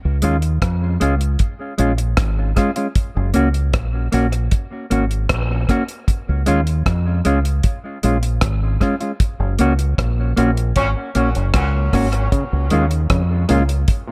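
A round, punchy fingered bass opens this hazy, spacious dub reggae piece at 77 BPM in F# major, joined by a dark, clean electric guitar with tape echo and a dry reggae kit of tight kick, hi-hat and rim click, while a distant, roomy horn section with vibrato enters at 10.8 seconds and a stringy muted clav with tape echo plays arpeggios from 12.3 seconds, in an echo-heavy mix with light reverb as the chords move between C# and F#.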